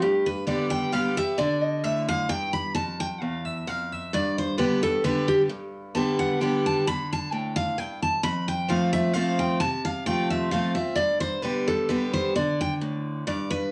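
A bright, full-bodied jumbo steel-string acoustic guitar carries the picked melody up front with a touch of plate reverb, while a second, boxy parlour guitar with fresh strings supplies picked accompaniment beneath it for the whole 13.7 seconds of this joyful, driving bluegrass cut. Set in G mixolydian at 131 BPM in a swung 3/4, the harmony moves between G and F chords, and the whole thing sounds as if heard from worn cassette tape, with warbling pitch drift and small-room ambience.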